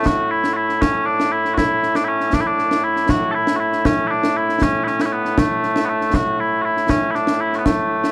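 Scottish traditional pipe music in a straight 6/8, this brief excerpt from a longer piece sounds proud and stirring. Mellow small bagpipes carry the melody up front as a continuous, sweet solo line with vibrato, while a concert snare drum and concert bass drum sit lower in the mix, heard in a small room with dark cymbals. Light reverb and a dark, warm production give the whole a rounded, intimate glow.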